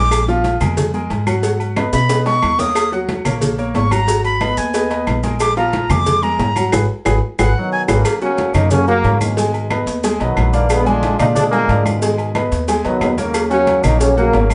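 A breathy, chiff-edged jazz flute carries the melody up front, joined from the start by a bright baby grand piano and a woody, thumpy pizzicato upright bass, opening this fiery, passionate salsa excerpt in Eb minor at 181 BPM. Congas, claves, and ringing agogo bells and timbales sit in the background alongside grainy maracas and tight cowbell and bongos, with drum fills at 1.8 and 7.1 seconds and a band accent marking the close of the flute solo before a smooth-topped trombone section takes over the melody at 7.6 seconds. The chords move through Abm7, Ebm7 and Bb7 in a wet, live-room ambience with a soft top end.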